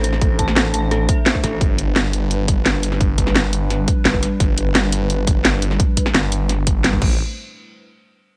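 A dry, tightly produced cut from a longer piece of dark technical drum and bass, tense and brooding as it moves between Am and G. A snarling, distorted sawtooth bass growls up front beneath a moody, detuned analog pad with chorus and sidechain pumping, while an eerie, inharmonic FM bell plays chorused, tremolo-laden arpeggios with delay until 1.5 seconds. The layered drum kit brings a cracking snare, bright hats and crash cymbal up front, joined at 0.2 seconds by a punchy, overdriven electronic kick, and the harmony falls away at 7.2 seconds.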